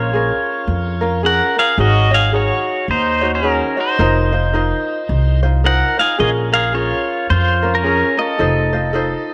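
Bathed in a moderate plate reverb, this brief, languid Hawaiian passage in Bb minor swings gently at 109 BPM, with a bright, clean electric pedal steel guitar up front carrying the melody through slide and volume swells played with fingerpicks, while a light, fingerpicked acoustic ukulele supplies the accompaniment and a woody, dark pizzicato upright bass anchors the relaxed Bbm7 to F7 progression.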